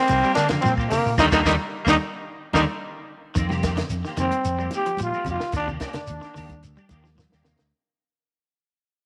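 Bathed in a moderate echo-chamber reverb, this funky, joyful afrobeat fragment is cut from a longer piece and fades out from 3.4 seconds. A growling, gritty trombone carries the melody up front, shadowed by a whispered, breathy trumpet and a raspy baritone saxophone that drops out at 2.6 seconds. Underneath, a round, punchy fingered electric bass and a dark, compact cocktail drum kit with a tight kick hold the groove, joined by thick-skinned congas, a grainy shekere and woody claves, while twangy clean guitar arpeggios and hollow-bodied semi-hollow guitar stabs, thickened by ensemble chorus, sit in the background; a band accent lands early on, and a drum fill closes the passage at 7.2 seconds.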